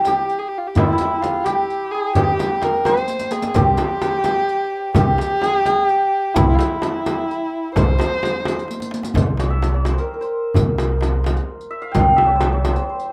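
Set in 6/8, this cut from a longer Persian modal ensemble piece feels warm and passionate, with a shimmering, ringing santur carrying the melody over a dark, woody kamancheh second line that glides with vibrato and portamento until it falls away at 8.9 seconds. A deep, very quiet tombak, a distant frame drum played with soft hands and a riq with bright, vintage jingles weave the percussion, adding drum fills that lead into the upright bass's entry at 3.6 seconds and into a new section at 9.2 seconds. The pizzicato bass sits up front on a single low note with steel-string bite, all in a rough home-demo mix with light reverb.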